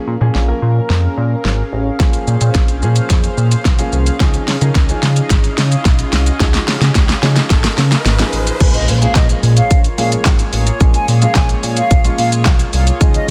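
Energetic and confident, this dance-pop fragment in Bb minor moves at 109 BPM in a straight 4/4, cut from a longer piece. A short-sustain grand piano and a shimmering, chorused pulse-width pad carry the Bbm7 and Dbadd9 chords from the start, both pumping against the sidechain, while a glossy, retro synth bass with a sawtooth edge and a moving notch sits heavy beneath them. The up-front, layered electronic drum kit, with a punchy kick, fat snare, handclaps, shaker and hi-hat, plays a fill through the build-up as an electronic riser climbs in the background from 3.7 seconds. At the drop at 8.6 seconds an impact hits, and just after, a close-miked, hollow concert flute enters with a pure, vibrato-tinged melody carried by digital delay. The mix is dry, dense and heavily limited in a modern way.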